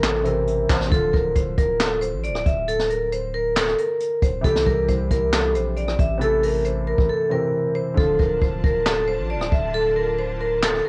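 A half-time trap groove on a roomy, distant brush kit with a high-tuned snare, boomy kick, handclaps, rim clicks and hi-hat, tinged by cassette tape, carries this melancholic yet hard-hitting hip hop excerpt, where a metallic, ringing vibraphone melody with analog delay sits up front over a soft felt-muted upright piano and a deep, decaying sine 808 bass, until the drums drop out at 7.1 seconds and a clear, bowed symphonic string section enters at 8.0 seconds as the kit returns minus its hi-hats, all inside a small-room home-cassette ambience.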